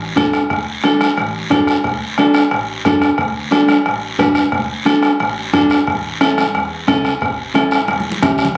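A straight four-beat cumbia groove drives this danceable, festive excerpt, with an up-front soft-beater bombo, hard-handed bright congas in the background and a raspy guiro under a dark, clean, fingered electric guitar and a woody, thumpy pizzicato upright bass, moving from D to A at 5.9 seconds before a drum fill at 7.9 seconds, all heard as if captured on a phone in a reverberant club.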